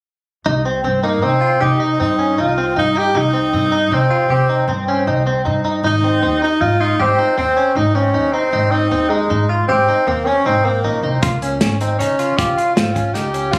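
Bright, twangy clean electric guitar arpeggios with analog chorus and a woody, dark pizzicato upright bass open this driving, tense progressive instrumental in 7/4, joined at 1.0 s by a forceful, clear tenor saxophone melody with light vibrato and digital delay, before a punchy, airy acoustic drum kit enters at 11.2 s, all heard in a small, phone-recorded room sound from a passage cut out of a longer piece.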